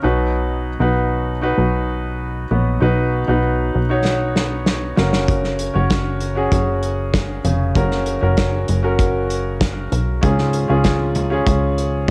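Uplifting and hopeful, this piano-driven pop excerpt opens on a clear, woody upright piano with audible action noise and long sustain, alongside a plucky, funky analog bass with a filter pluck, fast attack and decaying notes, both up front. A loose indie drum kit enters at 4.1 seconds with a fill that runs to 5.3 seconds, bringing a punchy kick, a medium-tuned snare and a rolled-off top in a pumping room. The piano and drums carry a cassette-tape color within the studio ambience of a home cassette recording as the harmony moves from B to F# to C#.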